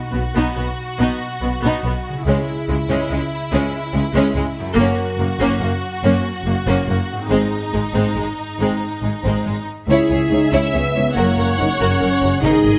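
Adventurous and determined, this cinematic excerpt in 6/8 at 94 BPM in C# dorian builds over its first 9.9 seconds, as a warm, vibrato-laden violin section carries the melody over a dark, woody second violin line, clear violas, background cellos, focused double basses and ringing, fingerpicked concert harp arpeggios, before a mellow yet punchy French horn section adds sustained chords at 9.9 seconds and very quiet, close and dry timpani enter at 12.4 seconds, with light reverb and detailed close miking giving the bowed strings a lush presence.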